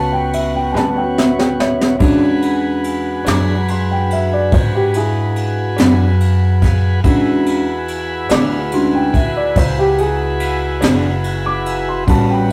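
A dark, boxy upright piano takes the lead with a solo across this gritty, rollicking slow blues excerpt, rolling in 12/8 at 48 BPM over A13 and E13 chords. Beneath it, a tonewheel organ holds smooth, clean sustained chords through a slow rotary speaker, while a pizzicato upright bass with gut strings gives a woody, thumpy foundation. The brush kit comes in at 0.3 seconds, up front with dark cymbals, a high-tuned snare and a boomy kick, and plays a fill from 0.7 to 2.0 seconds. An electric guitar through a small old amp sits in the background, slightly broken-up and lo-fi with tremolo, picked and compressed. The whole thing has the rough feel of a rehearsal-room take, with saturation and a moderate booth ambience.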